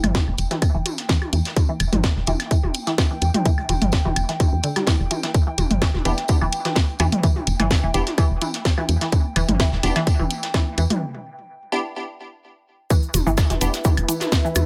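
Minimal techno with a cool, clinical mood, cut from a longer piece: a tight, up-front electronic kick and a woody, round FM bass that pumps, a garage kit with cracking snare and bright hats, a brushed vintage kit tucked in the background, delayed electronic toms and claves, a juicy, squelchy blip pluck riff soaked in phaser, lush chorus and dub echo, and a warbling, nostalgic pad fading in beneath, with crisp, detuned wavetable chord stabs arriving at 6.1 seconds, a break at 11.0 seconds, and a drop at 12.9 seconds where a grainy cabasa joins.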